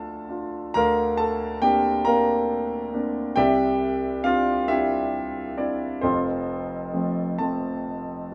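Classical solo piano in a lyrical vein, this short excerpt from a longer piece carries a peaceful, calm mood. A grand piano plays alone throughout its 8.3 seconds, its tone warm, polished and present, sitting up front in the sound. The music moves at a slow 45 beats per minute in 6/8, shaped with a flexible rubato feel in F major, the piano tuned slightly high. Harmonies pass from D minor through Bbadd9 over D and Cadd9 before settling on F major at 6.0 seconds, the playing spanning a broad range from deep bass to the upper treble. A modest small-room ambience adds gentle depth around the instrument.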